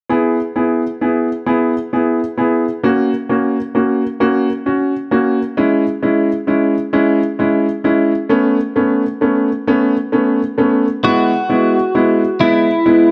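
Romantic and heartfelt, this short pop excerpt moves at a slow 44 BPM, counted in dotted quarters, in a straight 6/8 feel in E major, tuned to A4 = 443 Hz. An intimate, woody upright piano carries the accompaniment from 0.1 seconds, sitting up front with a bright, brilliant tone and audible action noise as it moves through E, F#, C#m/G# and Aadd9. At 11.0 seconds, as the harmony returns to E, a clean, picked twelve-string electric guitar enters with the melody, compressed and placed up front with a warm character. Both parts play until the cut at 13.1 seconds. A moderate echo chamber reverb gives the dark production a sense of space.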